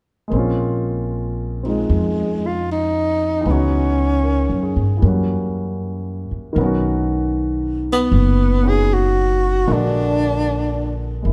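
Swung eighths at a slow 77 BPM in 4/4 carry this wistful, intimate jazz ballad in Bb minor, where a woody, growly pizzicato upright bass sits up front beside a warm, short-sustained grand piano from 0.3 seconds, before a dark, breathy tenor saxophone enters at 1.7 seconds with a whispered subtone, vibrato and scooped notes, closely miked and up front, the trio heard in a moderate recital-hall reverb.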